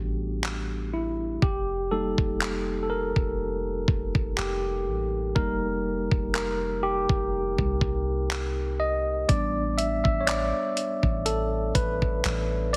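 A tine electric piano, clean and up front through its built-in speakers, carries this slow, late-night contemporary R&B excerpt at 61 BPM with a gentle sixteenth-note swing, moving between A9sus4 and F9sus4 chords over a deep, round 808-style bass while a gritty, sampler-style drum kit of handclaps, hi-hat and thumpy kick enters at 0.4 seconds, all bathed in light digital reverb and a heavily compressed, radio-like sound that deepens the longing mood.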